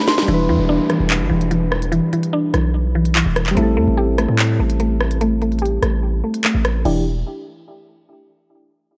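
Through a worn, warbling cassette haze with light digital ambience, this tense, menacing drill excerpt moves at 146 BPM in a half-time feel in E minor, cut from a longer piece and shifting from Em7 to Am7 and back. A drum fill opens it at 0.0 seconds before the up-front drill kit settles in with a sharp snare, crisp hats, handclaps, rim clicks and crash, while a distorted, aggressive 808-style bass with a heavy noise layer arrives at 0.3 seconds alongside a downlifter in the background. Above them, a woody, nasal FM mallet pluck spins bright arpeggios through chorus and digital delay, and soft, mellow electric-piano-like keys with a filter sweep fill in the chords.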